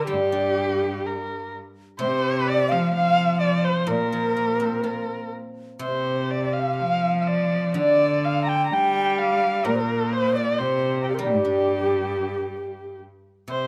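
An airy, end-blown bamboo low xiao carries the tender melody with expressive vibrato and tongued notes in this graceful Chinese traditional chamber piece, moving freely at a rubato 63 BPM in 2/4 in the G yu mode. A warm, smooth-topped erhu with sliding portamento and a focused, bright cello shape the second lines, both bowed by single players, while a silvery guzheng played with fingerpicks rings out the accompaniment beneath. Close, detailed microphones and light reverb frame this short passage cut from a longer piece.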